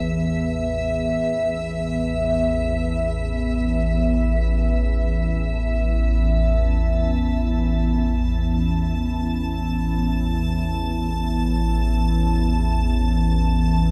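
A huge, wet reverb with a seven-second tail wraps this dark ambient drone in free time, cut from a longer piece, where an up-front, organ-like synth drone with ensemble chorus holds a detuned low A-to-E register under a filter sweep, while a far quieter, icy, crystalline glass pad with ring modulation and shimmer reverb hovers high above, the pair sustaining together through all 13.9 seconds for a vast, ominous mood.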